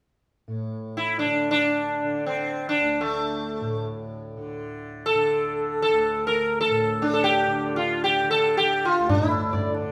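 A moderate recital-hall reverb surrounds this brief Hindustani classical passage, cut from a longer piece and unfolding in free time with a meditative, longing mood. A softly plucked tanpura sets a buzzing drone beneath everything from 0.5 seconds, sitting low in the mix. At 1.0 seconds the sitar enters up front, its plectrum-plucked melody mellow and round, with sympathetic strings adding a shimmering halo to its buzz as it moves between A3 and D5. Near the close, at 9.1 seconds, a high-tuned tabla arrives with a ringing tone that carries the live feel of the room. The sitar falls away at 9.7 seconds, leaving the tanpura and tabla to sound together briefly before the cut.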